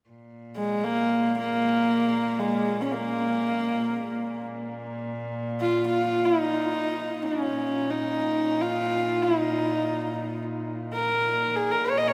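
A single bowed cello opens the recording at 0.1 s, sustaining a low drone with a reedy, gut-string tone in period style. At 0.6 s a horsehead fiddle enters over it and carries the melody for the rest of the fragment, sitting up front with a husky, earthy voice drawn from its horsehair strings. The fiddle's line is shaded with light vibrato and sliding portamento, while the cello stays quieter beneath as a steady foundation. Both players ring out in a vast, echoing cathedral space whose long reverb tail gives the Mongolian folk music a solemn, windswept mood. The passage runs as one unbroken section, cut from a longer piece and ending at 12.1 s.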